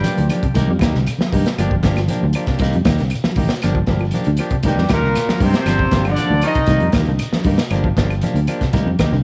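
A crunchy breakbeat drum kit sits up front in this funky, hypnotic afrobeat groove, its tight kick, medium-tuned snare and hi-hat sounding saturated and gritty with a rolled-off top in a pumping room. Beneath it, a round, dark fingered electric bass anchors the loop of minor seventh chords, while a twangy clean electric guitar plays stabs and a very quiet, mellow electric guitar adds fingered arpeggios. Very quiet congas with a bright, thin skin and soft hands fill out the percussion alongside a grainy shekere heard distantly in a large room and woody claves, both sitting in the background. A punchy horn section with light vibrato and octave doubling carries the melody in brief bursts at 0.0 and again from 4.7 to 6.9 seconds, joined by a raspy baritone saxophone playing a second line. The whole cut has the hazy character of a home cassette recording with light reverb, and the horns trail a touch of analog delay.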